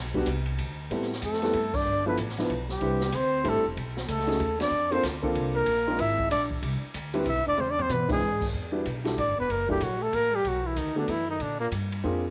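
Swinging in a lilting three, this moody, late-night small-group jazz excerpt sets a growly, woody upright bass and a dark, short-sustain grand piano under an open drum kit with dark cymbals and a boomy kick, while a breathy trumpet with scooped notes leads up front from 1.3 seconds over a mellow, lightly vibratoed trombone in the background, all within a small-room home cassette recording that features a drum fill at 7.6 seconds.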